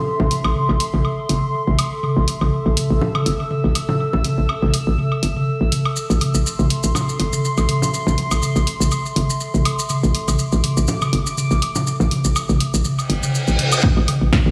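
A hollow, knocking FM bass sits up front in this quirky, sparse minimal techno piece, bouncing and pumping against a warbling, nostalgic lo-fi pad that drifts in the background with chorus and its own reverb. Overdriven electronic toms, congas and woodblock with tape echo mingle with a punchy analog drum machine's hi-hat and snare, while grainy, close maracas join at 6.0 seconds. A reverse cymbal rises at 13.1 seconds into an up-front overdriven kick at 13.8 seconds, all within a dreamy mix soaked in lush hall reverb.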